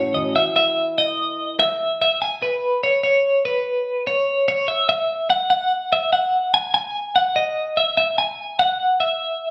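A wet, roomy studio sound with a large reverb frames this short folk excerpt in 3/4, played by a band together in one room with an anthemic mood. A bright, twangy twelve-string electric guitar carries the melody up front, clean and compressed with a tremolo effect, from the start through 9.5 seconds. Beneath it, a full-bodied fingerpicked jumbo steel-string acoustic guitar sits low in the mix and plays only until 1.6 seconds, leaving the electric to carry on by itself.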